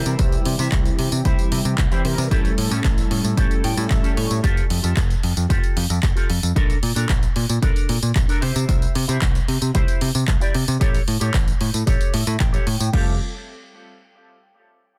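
A dense, heavily limited and nearly dry mix carries this sunny, groovy nu-disco cut, taken from a longer piece, at 113 BPM in a straight 4/4 in F major, moving through C, A7, Fadd9 and Bbmaj7. A punchy, tape-warm electronic kick and a layered house kit with warm hats, handclaps, tambourine and crash drive under an up-front, tube-saturated picked bass, while a bright, twangy envelope-filtered guitar riff runs throughout through lush chorus, low-pass filtering and dub echo. Round, detuned sawtooth synth brass with phaser, chorus, sidechain pumping and dub echo fills out the opening before dropping away at 4.4 seconds, and a clean electric guitar fill appears at 3.4 and again at 11.9 seconds.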